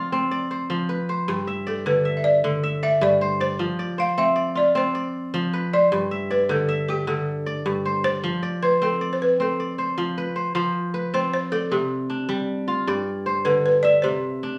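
A kora opens this joyful, flowing piece of West African string and xylophone music, its fingerpicked arpeggios crisp and ringing and placed up front, spanning from G2 to E5. At 1.3 seconds a dry balafon played with rubber mallets enters with the melody, its woody tone carrying a distinct buzz in the range from G4 to F5. The music moves in a straight 12/8 at 104 BPM counted in dotted quarters, with the harmony rocking between F5 and G for most of its length. Around 10.6 seconds a new section begins, passing through C5 and G5 before settling on C. The two players sound as if they are performing live together in one studio room, wrapped in a moderate reverb, and the recording is cut from a longer piece.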